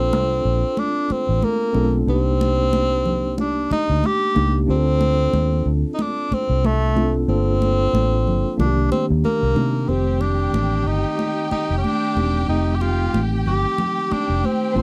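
Swung sixteenths at 92 BPM in 4/4 carry this smooth, cinematic slice of lush 1970s-style soul, where a round, punchy, foam-muted electric bass sits up front beneath a pop-style tenor saxophone melody with light vibrato, a mellow, clean tine electric piano plays accompaniment, high-tuned congas with a thick-skinned tone sit in the background, and a distant bowed string section enters at 9.9 s with a second line over F9, all in a dry, close studio recording.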